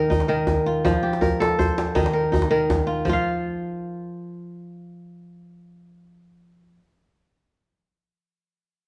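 Moving at 108 BPM in a flowing 12/8 with a straight feel, this joyful fragment of West African traditional string and xylophone music is cut from a longer piece. A bright, ringing kora sits up front, its crisp fingerpicked arpeggios spanning Eb3 to F5 across the full 6.8 seconds, while a medium-tuned djembe with metal rattles adds vintage, band-limited percussion until 3.2 seconds. The parts sit in a moderate recital-hall reverb that gives the plucked strings a spacious halo.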